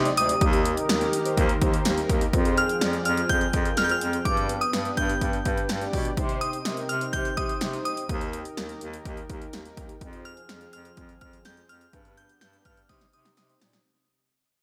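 A glassy, crystalline FM synth bell carries the melody in this cool, driving synth-pop excerpt in C minor at 125 BPM. Chorus and digital delay sit on the bell, which is heard over a smooth, dark analog pad and a clear, distant bass clarinet playing the bass, with round, nasal synth brass and a punchy, overdriven analog drum machine with gated reverb entering at 0.1 s. The harmony cycles through Eb, Fmadd9, G and Cm in a lush hall and bright 1980s-style digital production, and the passage fades throughout, closing with a drum fill at 12.9 s.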